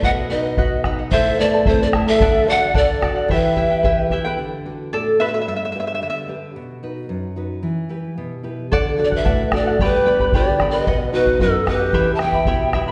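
A straight 2/4 pulse at 111 BPM drives this earthy, wistful Andean folk excerpt, where a deep, dark bombo sits close and dry up front beneath fingerpicked nylon-string guitar, full-bodied with audible finger squeak, and a shimmering double-strung charango that takes a solo from 4.4 to 8.7 seconds, while a breathy, chiffy bamboo pan flute with unsteady vibrato carries the melody up front over a wooden, end-blown quena's expressive second line in the background, all washed in a resonant recital-hall reverb.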